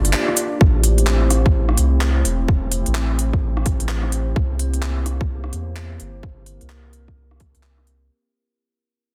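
A dark, warbling tape-like pad holding sustained chords through chorus and built-in reverb, a deep, round dub sub bass (both pumping from sidechain) and a garage kit of crisp hi-hats, cabasa, handclaps and rim clicks open this nocturnal, wistful future garage excerpt at 128 BPM with a 62% swing in A phrygian, moving through Gm7, Am7 and C7, before a tight, up-front electronic kick enters at 0.6 seconds just as the dense, heavily limited mix begins its fade-out.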